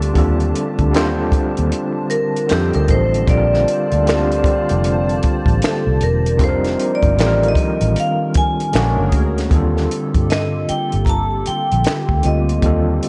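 Smooth and relaxed, this neo-soul R&B excerpt settles into an unhurried 77 BPM in 4/4 with a swung sixteenth-note feel. A vibraphone struck with medium hard mallets carries the melody as a solo through the first 9.5 seconds, its metallic, ringing tone colored by slow motor vibrato, a boxy small-room sound and a slapback echo. Beneath it, an overdriven tine electric piano supplies barky, gritty accompaniment through a combo amp with medium tremolo, while a hollow, flute-like soft pad holds mellow sustained chords with slow attack, long release and ensemble chorus. A brilliant trombone section adds tight, soft-attack stabs with light vibrato in the background until 9.1 seconds. A foam-muted fingered electric bass sits round and up front, and a compact cocktail drum kit plays finger snaps, hi-hat, punchy kick and a high-tuned snare with a dark, rolled-off top. The harmony moves from Ebmaj9#11 through F9, Bbmaj9, F7sus4 and Bb7alt before returning to Ebmaj9#11 as a new section begins at 9.5 seconds.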